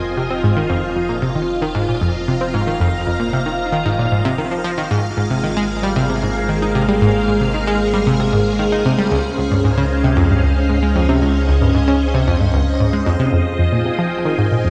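Ambient, sequencer-driven space music in F minor at 114 BPM, cosmic and hypnotic, in which a lush, vintage string machine ensemble holds slow-attack chords with ensemble chorus through Fm7, Ab6 and Dbmaj7 while a deep sine sub bass fades in until 13.3 seconds, and a bright, detuned, up-front analog pluck riff with chorus, tape echo and cassette tape coloring enters at 0.2 seconds and takes a filter sweep at 13.3 seconds, set in a plate-reverb space with a cassette tape sheen and cut from a longer piece.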